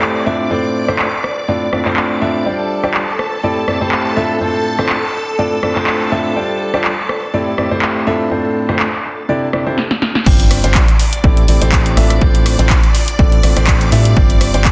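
Piano house at 123 BPM in D minor, this bittersweet, energetic excerpt from a longer piece rides a lightly swung 4/4 groove over a cycle of Dm7/A, G7sus4 and Am7 chords. A clear concert grand piano carries the riff up front, its deep bass and natural tone touched by digital delay and sidechain pumping. Behind it, a shimmering, vintage string machine holds sustained violin chords with slow attack and long release, its warbling sawtooth sound thickened by ensemble chorus, pumping in time and shaped by a filter sweep through the first 10.3 seconds. A punchy analog drum machine supplies crash, handclaps, hi-hat, rim click and snare, with low-pass filtering on snare, cymbals, hats and room, and a drum fill leads into the drop at 10.3 seconds. There an organ-like FM bass enters, hollow and dark with a fast, decaying attack, alongside a punchy electronic kick re-recorded in a large room, all under light reverb and a dense, heavily limited modern master.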